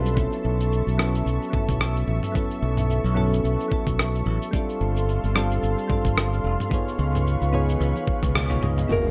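Sunny and smooth, this short sunset chillout excerpt moves at 110 BPM in 4/4 with a gentle sixteenth-note swing, built on soft, rounded electric-piano-like synth keys with chorus and digital delay over an ethereal, detuned pad and a bright, growly fingered electric bass sitting up front. A dusty soul sampler-style kit of rim click, shaker and toms, gritty and overdriven with muffled filtering, pairs with a thumpy overdriven electronic kick, while the harmony drifts through B9sus4, G9sus4 and C#7 under light reverb. A drum fill starts at 7.8 seconds, and at 8.9 seconds an electronic impact lands alongside a single fingerpicked note from an intimate nylon-string guitar.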